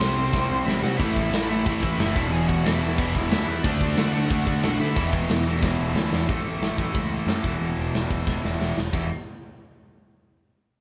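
A straight 4/4 punk rock charge at 181 BPM drives this rebellious, rowdy clip from a longer piece, with a tight metal drum kit up front, its bright cymbals, medium-tuned snare and tight kick ringing in a big room and dropping fills in at 0.3, 5.6 and 8.3 seconds. A growling, punchy overdriven bass anchors the riffs, while three guitars churn in the background: a tight distorted one, a compressed distorted one and a warm, double-tracked sludgy one. The harmony moves from C through A5, E, D and E5, and the sludgy guitar drops out at 6.3 seconds as the chords land on A. Above them a biting, overdriven lead guitar plays the melody until 5.1 seconds, and the whole band sounds as if it is playing live in one room with light reverb.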